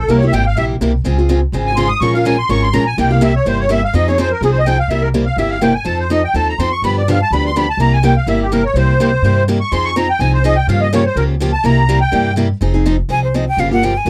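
A shimmering, reedy musette accordion solos through the first 12.6 seconds of this swinging, bittersweet jazz manouche excerpt in F minor at a brisk 249 BPM, over a woody, thumpy gut-string upright bass and a boxy, picked parlour-style steel-string acoustic guitar with audible finger squeak, until a breathy, bright jazz flute with vibrato takes up the melody at 13.1 seconds, in a dry, close 1970s-style studio sound with light reverb.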